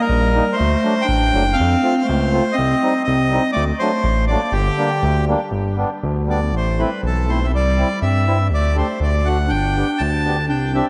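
Soaked in a lush, dreamy hall reverb, this short excerpt of festive alpine folk dance music moves at 121 BPM in 2/4 with a loose rubato feel, shifting from G minor to a jolly G major at 5.5 seconds. A reedy, close-miked accordion carries the melody up front with a touch of tape echo, while a smooth classical-style clarinet plays a mellow second line beneath it. A gliding, detuned sawtooth-and-square synth bass sits prominently with its portamento, and a second, round single-reed accordion fills in warm chords.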